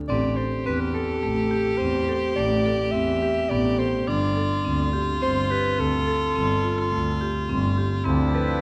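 Set in a moderate recital hall with a layer of vinyl crackle, this short excerpt of contemporary chamber music in 7/4 at 106 BPM feels urgent and pensive as it moves from Am7 through G9sus4 to Dm9. A dark, whispered soprano saxophone carries the jazz-style melody with subtone and light vibrato over a nasal, earthy bowed viola line. A close-miked marimba with medium hard mallets plays full, dry arpeggios, and a focused, up-front bowed double bass with vibrato holds the low end, while a reedy, breathing hand-pumped harmonium joins with sustained chords at 8.1 s.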